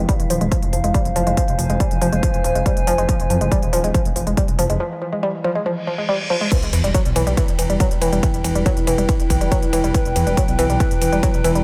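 Set in light digital ambience, this excerpt of driving peak-time techno at 140 BPM in 4/4 feels hypnotic and relentless, anchored by a heavy, layered electronic kick, a techno kit of crash, ride and smooth hi-hats, and a deep, rumbling detuned saw bass pumping under sidechain. Up front, a woody, wave-folded pluck riff with chorus, tube saturation, sidechain pumping and dub echo carries a filter sweep over Fm, while a warbly, lo-fi tape-like pad with chorus, reverb and sidechain pumping and a very quiet, eerie metallic drone hover in the background. A break arrives at 4.8 seconds, an electronic reverse cymbal and sub drop enter at 5.8 seconds, and the drop lands with an impact at 6.5 seconds as the harmony moves to Em.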